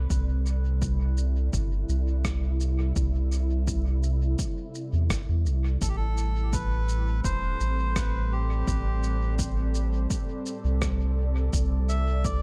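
Ambient dub with a meditative, spacious mood, where a round, up-front sub bass with tube saturation sits beneath an airy, detuned pad with chorus, a punchy overdriven electronic kick in the background, and a muffled, pitched-down shaker and rim click trailing dub echo, until a reedy, nasal melodica enters at 5.8 seconds over an Am11 chord and drifts through its own dub echo in an echo-heavy mix.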